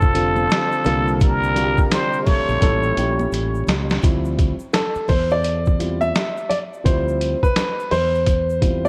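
A swung 85 BPM groove in 4/4 drives this cool, mellow jazz-hop piece, with a gritty, pitched-down, sampler-style boom bap kit thumping up front on hi-hat, kick and snare, an egg shaker and congas in the background, and a round fretless electric bass holding the low end. A raspy, growling plunger-muted trumpet with light vibrato and analog delay carries the melody over a punchy trombone second line until 3.3 s, moving through suspended ninth chords to an A7b9 marked by a drum fill. The dark, smooth grand piano then takes a solo in D dorian from 4.0 s, and the recording has a moderate plate reverb and the worn, warbly pitch drift of old cassette tape.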